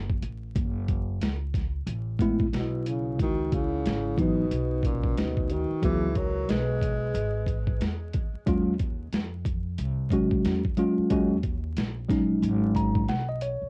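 A cassette home recording with vinyl crackle and moderate room ambience frames this smoky, nocturnal jazz-hop excerpt at 91 BPM with a 16th-note swing, where a woody pizzicato upright bass and a gritty, overdriven boom bap kit with a thumpy kick start together, a worn, slightly out-of-tune tine electric piano enters at 2.2 seconds over Gbmadd11, Dbm11 and Ebm11 chords, a breathy subtone tenor saxophone with tape echo carries the melody alongside a ringing soft-mallet vibraphone from 2.6 to 7.8 seconds, and the electric piano closes with a fill at 12.4 seconds.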